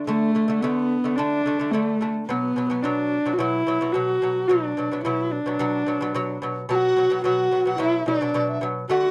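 A dry, close 1970s-style studio sound with moderate booth ambience frames this vast, proud Mongolian folk excerpt at 109 BPM in a straight 4/4, where a bright, delicate fingerpicked lute with double gut strings plays arpeggios up front beneath the husky, expressive melody of a bowed horsehead fiddle, rich in vibrato and portamento, over chords moving from D5 to B5, until a pure, hollow large bamboo dizi with a buzzing membrane joins with a mellow, tongued second line at 6.7 seconds.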